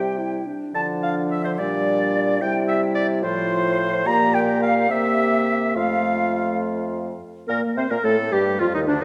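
A concert hall's generous reverb surrounds this lively, spirited excerpt from a quick classical-period movement for wind quintet, moving in 6/8 at 72 beats per minute in F major. The concert flute carries the melody with an airy, expressive vibrato and tongued articulation, set back at a distance, while the oboe sits close and up front with light vibrato on the second line. Beneath them, the mellow French horn has a vintage tone, and the clarinet sounds distant and roomy as the two supply accompaniment. The bassoon anchors the bass with light vibrato. All five instruments play throughout the nine seconds, with the harmony passing from C through Dm and Gm/Bb toward a C7 that resolves to F at 5.8 seconds, before a new section opens on Bb at 7.5 seconds.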